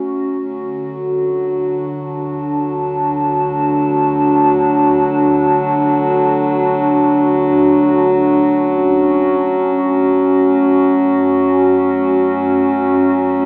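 This ambient excerpt drifts in free time with a serene, spacious mood, its harmony resting on D before shifting to F# minor at 8.5 seconds. Up front, a warbling, tape-like synth pad holds sustained chords with a nostalgic, detuned, dark character, its slow attack and long release softened further by chorus. Beneath it, a deep, rumbling bass drone sits in the background, ominous and vintage in tone. A pedal harmonium holds a single reedy, breathing F#3 throughout. A synth drone fades in from 0.4 seconds through the end of the passage. The whole recording is bathed in a lush hall reverb and carries a lo-fi cassette and AM radio colour.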